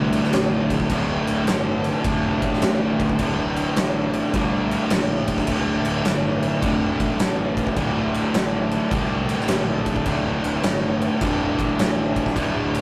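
Heavy and ominous, this stoner and doom metal passage moves at 105 BPM in 4/4 with a swung eighth-note feel, cut from a longer piece and captured as a rough rehearsal-room recording with light reverb. An oversized, low-tuned acoustic drum kit sits up front, entering at 0.1 seconds with boomy kick, fat snare and dark crash cymbal in a pumping big room, while two double-tracked picked guitars play the riff further back: a thick, dark fuzz guitar with distortion and a bright, overdriven cranked stack guitar. Beneath them a round, fuzzed fingered electric bass holds the low end, and a very quiet, reedy tonewheel organ with key click and slow rotary speaker sustains chords over a D chord throughout.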